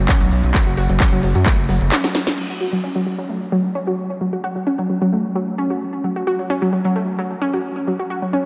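Industrial and driving, this excerpt of peak-time techno in F# minor runs at 131 BPM in a straight 4/4, opening with a heavy, overdriven electronic kick, a gritty, saturated square-and-saw synth bass with oscillator sync and a moving notch, and an up-front techno kit of cracking snare, smooth hi-hats, handclaps and crash. A round, detuned analog pluck carries the riff with chorus, analog delay, a filter sweep and sidechain pumping, which it shares with the bass. After a drum fill at 1.9 s the drums drop out by 2.5 s, leaving the pluck on its own, and the whole mix is soaked in a dreamy cathedral reverb.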